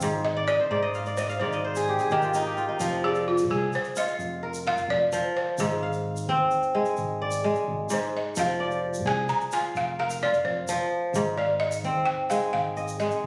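Reflective and hypnotic, this excerpt of West African string and xylophone music moves at 86 BPM in a straight 12/8 in F dorian, with a bright, ringing, fingerpicked kora up front spinning arpeggios and adding a fill from 0.4 to 2.8 seconds, while a round, punchy fingered electric bass and a grainy egg shaker sit beneath it. At 2.8 seconds the woody, buzzing balafon, struck with rubber mallets, takes a solo that runs to the end as the harmony alternates between Ab and Fm. The phone recording carries a moderate recital hall reverb along with added studio reverb and compression.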